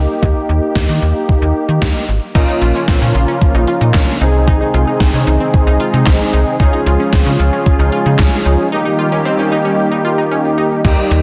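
Nostalgic and upbeat, this short synth-pop cut at 113 BPM opens on bold, nasal analog synth brass with chorus and a snappy, metallic slap-like FM bass, joined at 0.2 s by an overdriven, gated 80s digital drum machine with a thumpy kick, gated-reverb snare, hi-hat, handclaps and crash, before a lush, airy unison pad with chorus and phaser and a round analog pluck playing arpeggios through tape echo enter around 2.3 s over chords moving from Eb through Bbm, Ab/C and Db back to Eb, with a break from 8.7 s in a dense, heavily limited mix set in a concert hall reverb.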